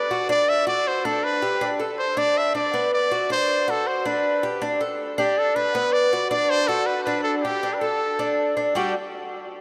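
A dreamy mix soaked in a huge ambient reverb opens this sunny, relaxed Latin excerpt in G major at 160 BPM, cut from a longer piece. Up front, a brilliant trumpet with light vibrato carries a pop-style solo melody between G4 and E5, while a picked Cuban tres with metallic double strings, some doubled at the octave, plays arpeggios from G3 to A4. Both parts play together from 0.0 to 8.9 seconds over a cycle of D, Gadd9/D, D5 and Bm, turning to Dsus4 and landing on G5 at 8.8 seconds.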